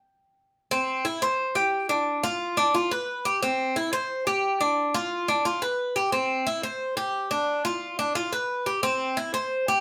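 Latin music in C major at 177 BPM in a straight 4/4, carrying a relaxed, warm mood across this short excerpt cut from a longer piece. A Cuban tres plays solo from 0.7 to 9.8 seconds, moving between C4 and C5. Its acoustic tone is bright and metallic, with picked double strings, some of them doubled at the octave. The instrument sits up front in the mix, close and present. It is heard in a studio room with moderate reverb of about 0.8 seconds, captured with the feel of a band playing live together in one space.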